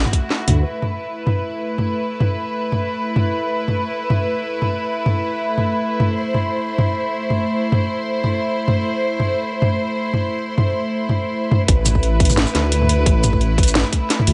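A half-time drum and bass groove at 174 BPM in 4/4, lightly swung on the sixteenths, drives this tense, cinematic A minor piece, with an up-front electronic kit of cracking snare, metallic hi-hats, shaker and toms running throughout. A rich symphonic string section holds soft, floating chords that pump against the sidechain, while the dark detuned saw bass and tight electronic kick appear only briefly at the start before returning together at the drop at 11.7 seconds, the bass deep and rumbling. A moderate echo-chamber reverb surrounds the sound, and the top end is dulled.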